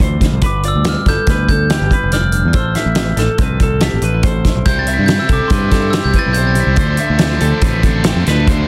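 Math rock and midwest emo in a playful, wistful 5/4 at 142 BPM in C major, this short cut from a longer piece sets a dark, slightly broken-up picked guitar arpeggiating through a small old amp over a clean electric guitar with lush chorus tucked in the background, a growling, punchy overdriven fingered bass and a loose indie drum kit up front with a fat snare and tight kick, while a bell-like glockenspiel played with soft plastic mallets carries the ringing melody from 0.5 s and a biting, double-tracked overdriven guitar riff joins at 4.7 s, all moving through G7, Fmaj7/A, Cmaj7 and Dm7 in a dry, dense, heavily limited modern mix.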